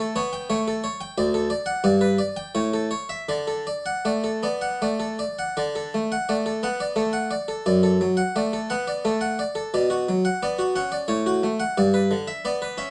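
In a 3/4 with free rubato at 77-92 BPM, this serene, dance-like baroque-style suite movement in D major features a solo harpsichord with a round, plucked Italian-style tone on one set of strings, sitting up front in a moderate studio reverb as its opening section repeats at 5.6 seconds and drifts from D through Bm toward a closing Em7/G in this short cut from a longer piece.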